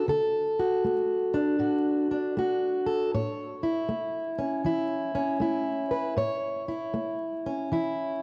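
Soulful and gritty, this brief blues excerpt in A major moves at an unhurried 79 BPM in 4/4, with a swung eighth-note feel. A single plugged-in steel-string acoustic guitar carries everything from 0.0 to 8.2 seconds, fingerpicked and placed up front, reaching from A2 to C#5. Its parlour-sized tone comes across warm and boxy, with the fresh-string clarity of new strings, and a cassette tape coloring on the guitar adds grit. The harmony rests on D before settling to A at 3.1 seconds. A moderate, lush hall reverb gives the sound a long, spacious tail, while vinyl crackle and the character of a home cassette recording lend it a worn, intimate quality.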